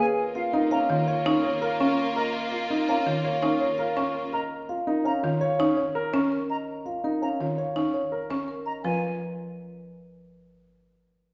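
This hypnotic, bright piece of minimalist classical pattern music opens with a mellow, round marimba played with soft mallets carrying the melody. Beneath it, a grand piano with short sustain adds up-front arpeggios, and a pure, distant silver flute with vibrato adds tongued arpeggios higher up. A lush, bowed violin section holds smooth, even sustained chords in the low register until 4.3 seconds. From 0.9 seconds a second marimba, struck with hard mallets on hardwood bars, brings a woody, buzzing, percussive accompaniment with a boxy, dry closeness. The sound sits in the wet reverb of a church or concert hall, with a dull top end and a faint mains hum, and the harmony shifts to a new chord at 8.8 seconds as this cut from a longer work moves into its next section.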